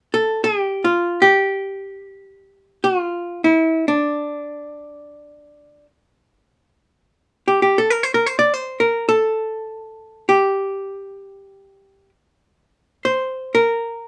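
Soulful and melancholic, this short cut from a longer makam ensemble piece unfolds in free time as a solo electric archtop guitar, clean, picked and hollow-bodied, sits up front from 0.1 to 14.1 seconds under a light reverb.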